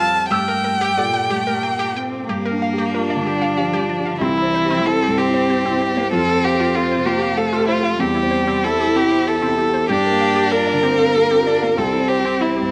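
Longing and melancholic, this excerpt from a longer neoclassical piano-and-strings piece moves at 95 BPM in a rubato 3/4 in G dorian. A rich solo violin sits up front with the expressive, bowed melody full of vibrato and portamento, while a solo cello traces a soft-attacked second line beneath it. A dark, boxy grand piano accompanies through chords from Gmadd9 to Gm7, C and Fadd9, and a glassy wavetable pluck with chorus and a filter sweep adds arpeggios, all set in a moderate echo-chamber reverb.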